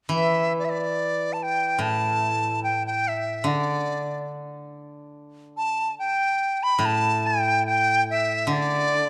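Chinese traditional chamber music in the D zhi mode, graceful and pastoral, moving at a free, rubato 72 BPM in 4/4. From 0.1 to 9.1 s an up-front bamboo dizi carries the melody with a pure, buzzing-membrane tone, tongued notes and expressive vibrato, while a steel-string zither played with fingerpicks rings out a silvery low accompaniment. A moderate stage reverb and a dark, warm production frame this brief fragment of a longer piece.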